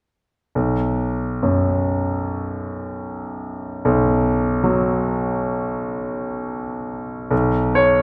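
Luminous and serene, this excerpt of impressionist classical solo piano drifts with a rubato feel in 4/4, somewhere between 58 and 76 BPM. A polished concert grand, clear and up front with a deep bass, plays alone from 0.6 to 8.0 seconds across a range from B1 to C#5, opening on a B5 chord. A wet concert hall reverb, about 1.8 seconds long, wraps the piano in a spacious glow.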